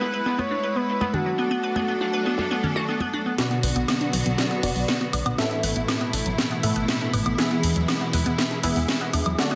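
Bittersweet and dreamy, this progressive house excerpt opens with a smooth, expressive sawtooth lead that glides with portamento and vibrato through chorus and dub echo, floating over clear, bowed symphonic string chords. A glassy, crystalline wavetable pluck spins arpeggios throughout, coloured by phaser, chorus, vintage 12-bit sampler grit and dub echo. In the first section a distant, roomy acoustic soul kit of hi-hat and snare sits in the background, with bright, close congas played with hard hands. At 3.4 s a build-up begins as punchy, detuned supersaw stabs arrive under a filter sweep with phaser and dub echo, alongside an overdriven, layered electronic house kit whose cracking snare, hi-hat and woodblock sit up front in a drum fill. From 3.6 s a funky, wave-folded analog bass blending sawtooth, pulse, sine and triangle tones adds a plucky, decaying low end, all wrapped in a small digital room reverb and a dense, heavily limited modern master.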